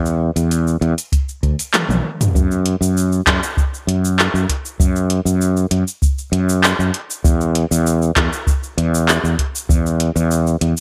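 A straight 4/4 groove at 98 BPM drives this wistful, relaxed sunset chillout piece. The up-front deep house drum kit layers cabasa, handclaps, metallic hi-hats and toms, overdriven and bathed in gated reverb with a large-room character. A deep analog electronic kick enters at 1.1 s, and the kit then plays a drum fill from 1.7 to 2.3 s. An up-front fretless electric bass sits underneath with a growly, tube-saturated bite, all within a bright 1980s-style digital production and a dry overall space.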